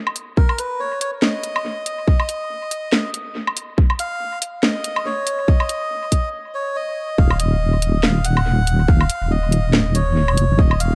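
A half-time deep dubstep groove at 141 BPM with a swung 16th feel opens the cut at 0.1 seconds: a garage drum kit of cracking snare, hi-hats and woodblock, sent through analog delay, is joined by a tight, up-front electronic kick, while a reedy, breathy melodica with dub echo carries a dark, brooding melody in Eb minor across an echo-heavy mix. After a build-up and brief break, the drop arrives at 7.2 seconds, where a deep, soft wobble bass with chorus enters, its sawtooth-and-sine tone detuned, compressed and sustained beneath the melodica until the excerpt ends.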